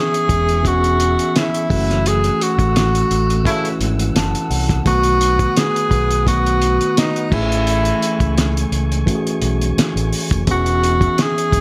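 A small-room, lo-fi sound frames this bittersweet, silky stretch of lush 1970s-style soul at 86 BPM, with a lightly swung 16th-note feel moving through E6, F#m7, B7 and Amaj7. An up-front tenor saxophone carries the melody with light vibrato and a smooth top, touched by slapback echo. It rides over a mellow tine electric piano with tube saturation, a tonewheel organ holding sustained chords through a slow rotary speaker in the background, a muffled, cloth-damped drum kit with a fat snare and dark cymbals, and an amped, overdriven fingered bass; a band accent begins at 2.1 seconds, distant horn-section stabs flash briefly at 3.5 seconds, and the electric piano adds a fill from 3.8 seconds.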